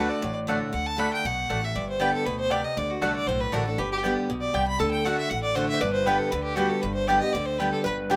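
A straight 4/4 pulse races along at 236 BPM in this joyful, virtuosic bluegrass excerpt in G major, its chords alternating between D and G. A clear, smooth fiddle with light vibrato carries the melody up front over a bright, full-bodied picked dreadnought guitar, woody mandolin stabs on double strings and a thumpy gut-strung upright bass played pizzicato. At 3.8 s a metallic, nasal lap resonator guitar played with fingerpicks and slide adds a second line, all set in a moderate spring reverb.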